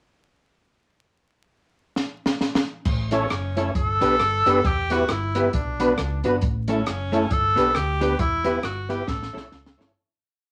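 Vinyl crackle and a short, wet studio reverb frame this upbeat, joyful ska piece in A mixolydian at 135 BPM, swung on the eighths, which opens with a pickup bar and a fill from a compact cocktail drum kit that is dry and up front, with dark cymbals, a high-tuned snare and a punchy kick, before it settles into a ska beat with a side-stick backbeat. A round, amped fingered electric bass walks in at 2.9 seconds, and at 3.1 seconds a bright, up-front tenor saxophone enters with a vibrato-laced, motif-based melody of call phrases, set over off-beat chops from a clean, compressed hollow-body archtop guitar with slapback echo in the background and a clear tonewheel organ with chorus vibrato and a slow rotary speaker. The chords move from A through G, Em and Bm and back to A, with a closing drum fill as the piece fades out from 8.2 seconds.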